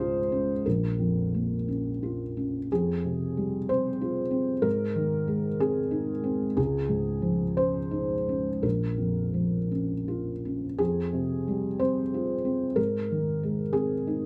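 Intimate and wistful, this short fragment of neoclassical minimalist piano drifts in a rubato 6/8, played solo on a felt-muted upright piano whose thick felt gives each note a dark, mellow softness. Close, detailed miking with little reverb keeps the instrument up front, so its muted tone feels near. The harmony circles through Dbadd9, Bbm, Fmadd9 and Ab, and the opening passage begins again at 10.8 seconds before the recording breaks off at 14.3 seconds.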